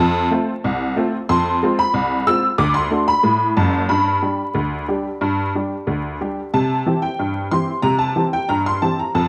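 A detuned, jangly honky-tonk upright piano carries this short ragtime fragment alone, sitting bright and up front across a broad span from the deep bass to the high treble. The mood is lively and jaunty, moving in a straight two-beat metre. Its harmony passes from F to F minor, then through D and G before settling on C at about 6.5 seconds. A moderate spring reverb gives the room a lingering, open tail, while the cassette tape lends the piano a vintage tinge. Vinyl crackle and a homespun, home-recorded character complete the sound of this snippet cut from a longer piece, which runs just 9.3 seconds.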